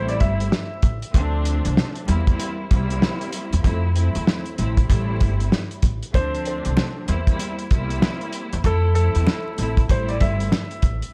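A cloth-damped, thuddy drum kit with a fat snare, tight kick and vintage 12-bit sampler grit sets a swung 96 BPM boom-bap groove beneath a pizzicato upright bass with a woody tone, while a lush bowed string section with vibrato and portamento carries an Am7–Dm7–C7–Fmaj7 cycle and a clear, polished upright piano with tape echo sketches the melody briefly at the start before returning at 6.1 seconds, joined by a very quiet finger snap at 6.8 seconds, giving this reflective, moody hip-hop passage a small-room ambience and a bed of vinyl crackle.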